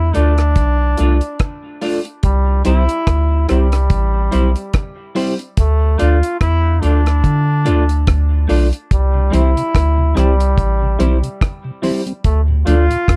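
A warm, sunny roots reggae excerpt swinging on its sixteenths, where a bright, distant trombone carries the melody through tape echo over a round, deep dub sub bass and a dry drum kit of tight kick, hi-hat and rim click, while a clean semi-hollow electric guitar with tape echo and a reedy, slightly out-of-tune electric piano with fast tremolo fill in the Dm and C changes, and a mellow, flute-like tonewheel organ on slow rotary speaker joins in the background at 9.1 seconds within a dark, dry production.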